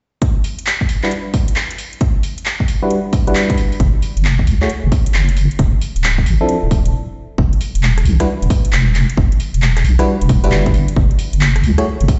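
Skippy and late-night, this UK garage two-step fragment swings its 16ths around a punchy, tape-toned electronic kick and a house kit of handclaps, rim clicks and metallic hi-hats. Glassy, bell-like FM electric piano stabs with chorus, a low-pass filter and tape echo colour the Em9 harmony from 1.0 s, and a deep, dark wobbling bass with chorus and sidechain pumping joins up front at 3.8 s. After a brief stop at 6.9 s the groove returns, all of it heard as if played on a big sound system in a bare stone room, with a dulled top end.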